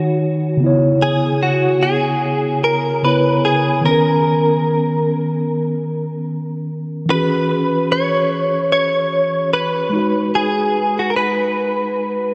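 A mellow tine electric piano and a clean, direct-recorded electric guitar carrying the melody through ensemble chorus and analog delay sit up front together from the start of this late-night, longing R&B excerpt at 74 BPM with a gentle 16th-note swing, drifting over D#m7, C#m7, Bmaj7/D#, E69 and G#m7 in a dreamy mix soaked in a huge ambient reverb.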